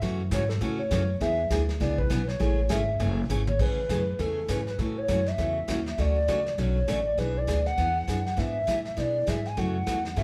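Bright picked acoustic guitar, a thumpy gut-string upright bass and a vintage brush kit with dark cymbals open this playful, down-home western swing piece at 201 BPM in A major, joined at 0.3 s by a soft, hollow, clarinet-like synth lead with chorus and vibrato carrying the melody up front, while a drum fill at 3.3 s ushers in a new section over seventh and ninth chords, the band sharing one room with moderate large studio reverb.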